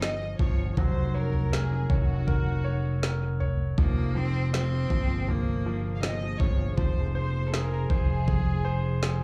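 A growly, punchy fretless electric bass with ensemble chorus and an up-front electronic R&B kit with a knocking kick, woody snare and toms anchor this emotional, melancholic 80 BPM pop ballad excerpt in 4/4, heard live through a venue's PA with club reverb, as a brilliant, polished concert grand piano with slapback echo plays the accompaniment, a biting, intense solo bowed cello with vibrato sings the distant melody until 6.0 s, a reedy, gut-string studio violin section carries a second line, and from 4.7 s an ethereal, airy detuned pad with a slow attack and long release sustains chords in the background over an Ebadd9, Gb/F, Abadd9/F and Fm progression.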